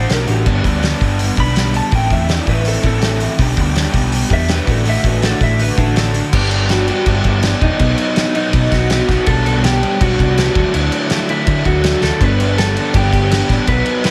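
The recording has a big arena sound, with a lush hall reverb and a small room around the players, in this upbeat, wistful indie rock passage cut from a longer piece, moving at 164 BPM in 4/4 with a straight feel in G major. The melody comes from an electric guitar through a small old amp, slightly broken-up, compressed and lo-fi with a slapback echo, and a clean electric guitar solo fills the opening 6.3 seconds. Behind it sit two overdriven, picked guitar riffs, one crunchy and bright, the other carrying analog chorus and slapback echo. A dark, round hollow-body short-scale bass and an up-front, loose acoustic drum kit, with a punchy kick, dark cymbals and a pumping room sound, drive the chords from G through Am, G/B and D/A. At 6.3 seconds a very quiet vintage string machine enters with slow-attack, mellow ensemble chords over G, B, G/B and Dadd9, and the drums play a fill at 12.0 seconds before the return to G.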